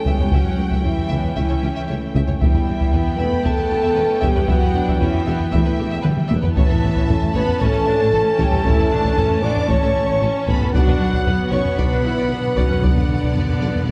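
Cut from a longer piece, this dark, epic orchestral film-score passage sits in a moderate scoring-stage reverb with a dark, warm production, and heavy-stick taiko drums are recorded in a small room. At 115 BPM in a straight 4/4, a lush, distant symphonic violin section carries the bowed melody with smooth vibrato, while a focused chamber violin section traces a second line beneath it. Violas and cellos hold the accompaniment and bass in the background, joined by a very quiet, clear double bass section and a very quiet tuba with a dark, smooth top. The brass adds weight: a dark, roomy French horn section and a background trombone section sustain chords, and a distant, clear solo trumpet punctuates with stabs. Over a progression moving from C#dim through Em and A to Bm, the taiko break into a fill at 6.1 seconds, and close, dry timpani on medium mallets enter at 10.7 seconds with a fill that runs to the end.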